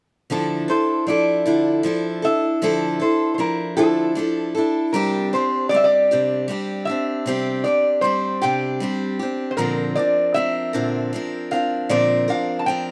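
A lap resonator guitar and a bright, picked steel-string acoustic guitar enter together at 0.3 s in a wistful, intimate acoustic folk piece in D minor, moving slowly at 52 BPM in a straight 6/8. The resonator carries the melody with a metallic, nasal slide tone played with fingerpicks, while the steel-string guitar sits up front with accompaniment touched by slapback echo, moving from Dmadd9 to Csus2 and Bbadd9. The dry outdoor sound keeps this short fragment of a longer piece close and personal.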